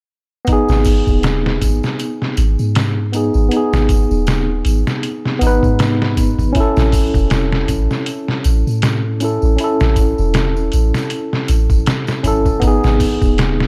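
Trip hop in G# phrygian at 79 BPM, this melancholic, hypnotic excerpt moves with a gentle 16th-note swing over a dark, warm production bathed in digital ambience. A bright, clean tine electric piano sits up front from 0.4 seconds, its tone shimmering through harmonic tremolo, a low-pass filter and tape echo as the harmony moves from G#m to A at 6.6 seconds and back to G#m at 12.6 seconds. The sampler-style drum kit is compressed, pitched down and muffled, with a thumpy kick, a medium-tuned snare and hi-hat re-recorded in a small room and placed up front. A ringing acoustic tambourine adds a faint shimmer in the background. Underneath, a soft 808-style bass enters at 0.7 seconds, its deep, round sine tone striking with a fast attack before decaying into a dark low end.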